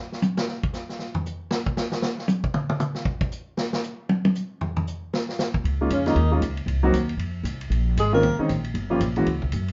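Small-group swing and bop jazz in Db major at a brisk 232 BPM, swinging and warm, opening with a vintage drum kit playing alone for its solo across hi-hat, kick, ride, snare and toms, its dark cymbals and punchy kick set up front. At 5.6 seconds a woody, thumpy pizzicato upright bass enters, a warm grand piano joins at 5.8 seconds, and by 5.9 seconds a clear, close-miked alto saxophone carries the melody with vibrato while a breathy, whispered tenor saxophone traces a second line in the background. The moderate studio ambience places the group further back in the room with a rolled-off, dark top, and this cut from a longer piece moves through chords such as Db69, Cm7b5 and Bbm11.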